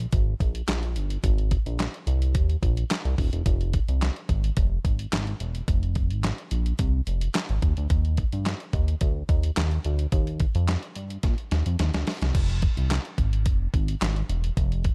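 Synth bass and drum machine start together at the top, setting up a slick, danceable early-eighties boogie funk groove in a straight 4/4. The chorused synth bass sits up front, a retro, dark, glossy blend of pulse and sawtooth tones with pulse-width modulation and a moving notch that keeps its colour evolving, each note striking fast and then sustaining. Beside it, also up front, the detuned 8-bit digital drum machine has an electronic, sampler-style character, with a thumpy kick, a medium-tuned snare, handclaps, hi-hat and crash cymbal, all carrying a tape-warm tint from being re-recorded in a small room. A drum fill from 11.2 to 12.3 seconds leads into a new section that runs to the end of this brief cut from a longer piece. The sound is dry and close, with lossy compression artefacts audible across the mix.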